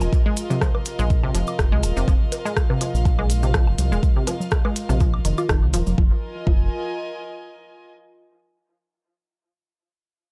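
Minimal techno with a quirky, clinical mood, cut from a longer piece and built on a single Fm7 chord, opening straight into a drop where an up-front deep electronic kick and clicky hi-hat and rim-click kit drive a lightly swung groove under a round, sine-and-sawtooth analog bass that pumps against the kick. A juicy, squelchy blip pluck with chorus and delay carries the riff, while a dry, tape-echoed woodblock, conga and bongo layer sits in the background beside a grainy acoustic cabasa. Throughout, a close chamber string section with a reedy gut-string tone and light vibrato pumps softly underneath and carries on alone once the other parts have fallen away by 6.7 seconds, in a dark, dry production.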